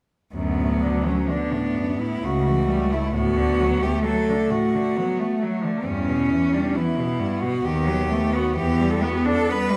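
A focused, close cello carries the bowed, vibrato-laden melody of this tender classical passage for cello ensemble in D major, moving at a rubato 66 BPM in 3/4, entering at 0.4 seconds just after an even, clear accompanying cello, an intense, rich-toned cello on the second line and a smooth bowed bass cello that drops out at 9.3 seconds have begun at 0.3 seconds, all set in the reverberant bloom of a recital hall as the harmony shifts from D toward E minor in this short cut from a longer piece.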